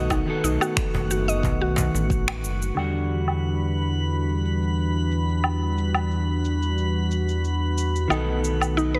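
Earthy and warm, this organic downtempo excerpt moves at 90 BPM in a straight 4/4, centred on E minor and shifting from B7 to Em9 and back to B7. A dark, clean, fingered electric guitar plays accompaniment throughout with warbly pitch drift, tape echo and sidechain pumping. Alongside it, a smooth, detuned sawtooth pad holds sustained chords with chorus, and a round, up-front analog bass also pumps with the sidechain. A woody, full-bodied FM pluck plays detuned, decaying arpeggios with chorus and tape echo at the opening, then returns at 8.1 seconds, while a glassy texture of drifting sine overtones floats quietly above in its own reverb. The deep, layered electronic kick and a compressed, saturated cajon with faint snares drop out by 2.2 seconds, leaving the electronic woodblock, cabasa and finger snaps, which are low-pass filtered with soft clipping on the snare and take on a filter sweep from 2.8 seconds. 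The mix has light reverb and a dense, heavily limited modern master.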